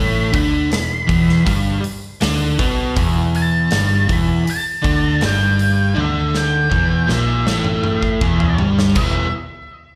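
An up-front, double-tracked overdriven semi-hollow guitar drives a gritty, smoky blues rock riff with a southern rock edge in E minor at 80 BPM, its hollow-body tone coloured by slapback echo. Above it, an octave-fuzz lead guitar carries the melody between E5 and B5 through distortion, slapback echo and digital delay, while a dark, round, foam-muted bass anchors the low end. The big rock drum kit enters at 0.3 seconds with a punchy kick and bright cymbals and plays a fill from 6.0 seconds, all heard as a live club gig through the venue's PA with light reverb, tuned to A4 = 445 Hz, in an excerpt cut from a longer piece.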